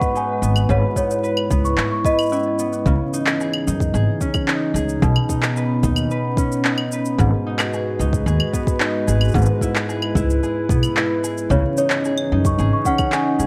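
Set in a small room with light reverb and a haze of vinyl crackle, this wistful, delicate folktronica piece in C# minor moves at 111 BPM: fingerpicked concert harp arpeggios ring out with digital delay over a warbling, lo-fi pad of dark sustained chords, a woody pizzicato upright bass with tube saturation sits up front from 0.4 seconds, a soft electronic kick and produced shaker, claves and handclaps keep a straight pulse, and a bell-like celesta adds a sweet second line through digital delay at the start before returning at 11.5 seconds.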